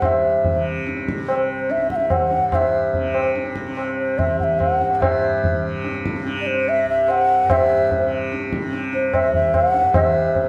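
A mellow, hollow bansuri carries the melody up front from the opening second, its airy bamboo tone shaped by vibrato, crisp attacks and a slapback echo as it moves between C5 and F#5. Beneath it, a softly plucked tanpura holds a buzzing, shimmering drone low in the mix, while a low-tuned, ringing tabla keeps a steady triple metre. This Hindustani classical passage feels serene and radiant, and the pace gradually quickens across its length. The music shifts into a new section at 5.0 seconds, and the fragment runs to 10.5 seconds, clearly cut from a longer performance. A moderate recital-hall reverb gives the ensemble a natural, open acoustic.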